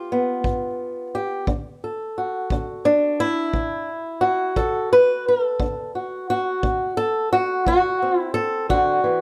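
A fingerpicked swing-style acoustic guitar sits up front, its dark, woody tone with the boxy character of old strings carrying the melody through a plate reverb in this laid-back, swaggering acoustic country blues cut from a longer piece. A tight, natural kick drum played with brushes sits well behind it from 0.4 seconds, set in a studio room. The straight 12/8 metre and a wet studio reverb give the short passage an easy, laid-back feel as the harmony moves from G7 to D.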